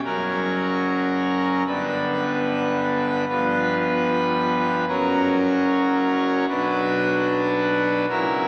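A steady, straight 4/4 pulse at 74 BPM moves this grave, dark chorale-style classical fragment, cut from a longer piece in B minor. A solo pipe organ on full organ, with mixtures and a romantic voicing, carries every line from C#1 up to B4, sounding majestic and brilliant and placed up front. The harmony moves from F# to G, then G7, back to F#, and settles on Bm at 6.5 seconds before the passage ends at 8.5 seconds. A wet church reverb with a 2.8-second decay surrounds the organ, and the sound seems heard from further back in the room through a small speaker.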